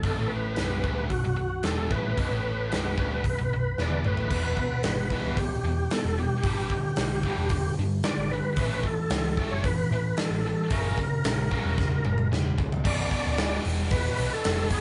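Recorded as a band playing live in one large studio room with moderate reverb and nothing above 10.8 kHz, this driving, gritty classic rock excerpt in B minor at 112 BPM lays a thick, overdriven tonewheel organ melody with percussive attack, chorus vibrato and fast rotary speaker over a tight, bright, double-tracked distorted guitar riff, a dark, round hollow-body picked bass, and a punchy, up-front big rock drum kit whose fills at 3.8 and 11.8 seconds lead the chords from Bm through Em, G, A and F#7 back to Bm.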